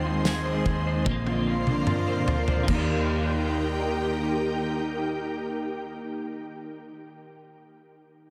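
A blissful, dreamy dream pop fragment opens with an up-front ethereal, airy pad of detuned, sustained chords with ensemble chorus, a bright, twangy clean electric guitar with tremolo and lush chorus set in the background, a slightly broken-up guitar through a small old amp playing chorused, delayed arpeggios, and a round, foam-muted vintage picked bass, while a loose indie drum kit with dark cymbals and a punchy kick plays from 0.3 to 2.9 seconds, including a fill from 1.1 seconds, the whole mix sitting in a huge ambient reverb and a dense, heavily limited modern master.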